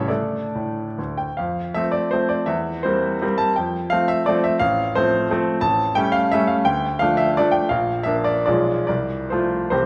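Set in a wet recital hall with a 1.7-second reverb tail, an intimate, brilliant baby grand piano sits up front with audible action noise as it plays solo from 0.0 to 9.9 seconds, ranging from A0 to A5 through a nostalgic, wistful romantic classical dance in 3/4 and F major, its dotted rhythms moving with rubato between 130 and 186 BPM as a brief opening gives way at 1.4 seconds to a longer passage that moves through chords such as C7/E, A7, Dm, Bb and Bdim7 before settling on F/C in this fragment cut from a longer piece.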